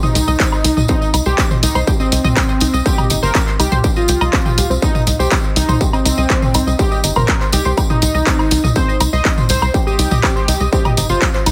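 Melodic techno at 122 BPM in C minor, this hypnotic, dramatic fragment cut from a longer piece rests on a single C minor chord throughout. A fat, detuned sawtooth lead carries the melody between C4 and Eb5, its sub octave and vibrato colored by subtle chorus, cassette tape character and dub echo. Alongside it, a tight sequenced synth spins arpeggios in the same register, its wave-folded, mellow tone treated with chorus, phaser, digital delay and sidechain pumping. The tight, punchy sequencer bass enters at 0.2 seconds, driving between G1 and C2 with a sawtooth and square-wave pluck that pumps with the sidechain, and a distorted electronic kick arrives at 0.4 seconds, placed up front and re-recorded in a large room. From the start, a layered techno kit of handclaps, warm hats, toms and woodblock plays alongside a jingly, close acoustic tambourine. Light reverb and digital ambience surround a heavily compressed, radio-like sound.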